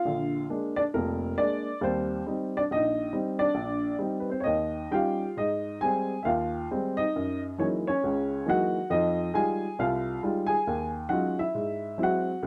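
Close, detailed microphones and light reverb put a woody, natural upright piano up front in this swinging, sophisticated solo jazz excerpt at 136 BPM in 4/4, its swung eighths pulled by rubato as the piano spans low bass to high treble over rich extended chords, moving from Eb major to Ab major at 5.4 seconds.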